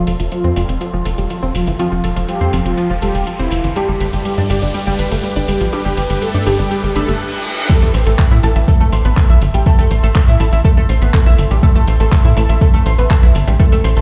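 Hypnotic and driving, this melodic techno passage in A minor at 122 BPM is cut from a longer piece, moving from a build-up over F and G into a drop on A minor at 7.7 seconds. A brassy, detuned synth melody sits in the background with phaser, vibrato, 12-bit sampler grit and dub echo, playing only until 7.2 seconds, while a moody, sub-octave ambient pad holds slow-attack chords with chorus and built-in reverb. A round, bright analog pluck spins arpeggios through tape echo, and muted, deep dub chord stabs add phased, ensemble-chorused accents, both sharing the sidechain pumping heard on the bass, pad, brass and pluck. Underneath, a tight, nasal sequencer bass drives up front, and an overdriven deep house kit of crash, handclaps and hi-hat enters at 0.1 seconds. Alongside them through the build come a riser and reverse cymbal and filter sweeps on the pluck and polysynth. At the drop an overdriven, layered electronic kick punches in up front, re-recorded in a small room like the kit, and the whole mix carries the large reverb of a big sound system in a bare room.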